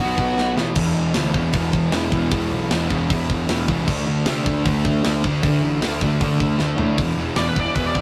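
A straight, driving 154 BPM punk rock pulse in 4/4 sets a raw, aggressive tone in this short excerpt, where three overdriven and fuzz-distorted rhythm guitars churn through riffs from B5 to E5 and D5 in the background. A growly, bright fuzz bass drives underneath, and a tight metal drum kit with bright cymbals sits up front from 0.2 seconds, throwing in quick fills. A dark, nasal lead guitar with a parked wah flashes briefly at the start and returns at 7.4 seconds during the closing solo section, all wrapped in light reverb and the tube-saturated grit of a rough rehearsal room.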